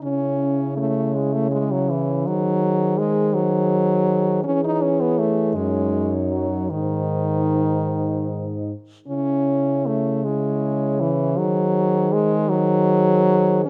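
Four French horns sound together from the start of this solemn, melancholic classical fragment in C# minor, moving with rubato in a slow 6/8 at 50-56 BPM. A distant, roomy horn carries the melody in the background, and a second horn with light vibrato and a smooth top plays the second line behind it. A warm, up-front horn with gentle vibrato supplies the accompaniment, while a mellow bass horn sits close and present beneath them. Together they move through chords from C#m to G#7/D# and a G#7sus4/F# that settles on G#, all captured with close, detailed microphones and light reverb.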